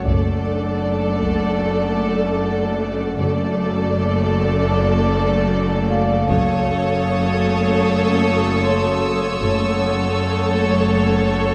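A cinematic suspense cue, ominous and mysterious, moves at a measured 77 BPM in 4/4, cut from a longer piece and lasting about 11.5 seconds. A lush violin section carries the melody, backed by a focused, distant second violin line, a close viola section and a clear cello section holding the bass. A double bass section sits in the background until 10.1 seconds, alongside a tense, detuned, string-like drone with its own built-in reverb. An ethereal glass harmonica sustains beating chords, while a dry, metallic vibraphone adds ringing texture from the start. A taiko ensemble with heavy sticks strikes at the opening and again at 6.3 seconds, where a high violin texture joins and the harmony shifts from D/F# to F#m. The whole sits on a moderate scoring-stage reverb with a softened top end.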